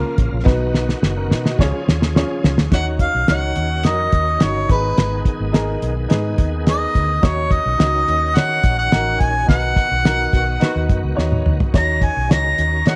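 This uptempo, uplifting 1960s-style soul excerpt at 106 BPM opens with a woody, slightly detuned upright piano, a bright tonewheel organ holding chords through a slow rotary speaker, and a brief touch of the vibrato-laden saxophone section, before a thuddy, cloth-damped drum kit and a round, foam-muted electric bass enter at 0.2 seconds, the drums launching into a fill at 0.5 seconds. At 2.7 seconds a mellow harmonica with scooped notes and slapback echo takes the melody up front, while the background saxophones return briefly at 10.3 seconds amid a band accent.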